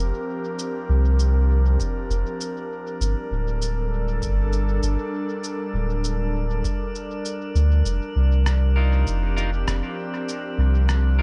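A hazy, echo-heavy digital ambience with a faint mains hum frames this short cut from a longer ambient dub piece, moving at a straight 99 BPM in F major. A round, deep sub bass sits up front from the start, beneath an airy, breathy pad with a detuned, chorused shimmer and a glassy texture of drifting sine overtones bathed in its own reverb. From 0.6 seconds, a muffled, pitched-down electronic shaker and rim click carry dub echo, and a tape-warm electronic kick drum sits in the background from 1.8 seconds to 9.2 seconds. The chords move from Fsus4 to Gm and settle on F7sus4, giving the spacious mood a suspended feel. Near the end, at 8.8 seconds, a bright, clean electric guitar adds picked stabs that trail off into dub echo.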